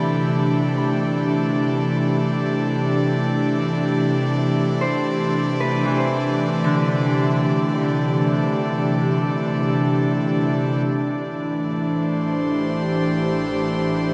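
An airy, breathy pad with chorus holds sustained chords up front from the start, while a fingerpicked Celtic harp rings out arpeggios through tape echo in the background, setting a reflective, serene ambient mood in free time and A minor, tuned to A4 = 438 Hz. The harp stops at 10.5 seconds, and at 10.8 seconds the harmony settles from Am9 to Am as a dark, bowed double bass section enters low in the mix, its expressive vibrato and portamento colored by tube saturation. A huge, wet reverb with a long 8.3-second tail surrounds this excerpt, which is cut from a longer piece.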